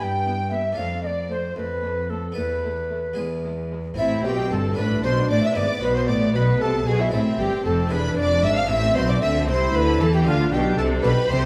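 Dramatic and driving, this baroque-style concerto movement in A minor moves at 76 beats per minute in dotted quarters, a straight 6/8 lilt, tuned slightly low at A4 = 438 Hz and cut from a longer piece. An alto recorder with a pure, woody tone and vibrato carries the melody alongside a violin section whose focused, smooth-topped sound sits further back and climbs as high as F6. A second, intimate violin section with soft attacks plays a supporting line close by, while a lush, intense viola section and an airy, bright harpsichord fill the accompaniment in the background. An even, smooth cello section anchors the bass from the start, and a distant, expressive double bass section joins it at 4.0 seconds as the harmony resolves from an E chord onto A minor. The whole is framed by a dark production and a recital hall reverb of about 1.5 seconds that lends the ensemble a generous, resonant space.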